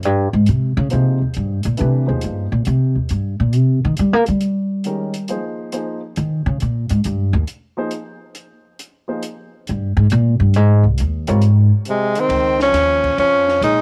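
This short excerpt of modal jazz has a small-room sound, with a swung 4/4 feel at 137 BPM in Ab major and an open, searching mood. An upright bass takes a pizzicato solo from the start until 12.3 seconds, woody and up front, resting on an Abmaj9 chord. A compact cocktail drum kit sits far back beneath it, dark and rolled-off on top, with a high-tuned snare, punchy kick, hi-hat and ride cymbal. A baby grand piano adds mellow accompaniment from 0.9 to 11.4 seconds. At 11.9 seconds a breathy tenor saxophone takes the melody, with light vibrato and scooped notes, joined by a clear trombone on a second line, as the harmony moves to Dbmaj9 at 12.3 seconds.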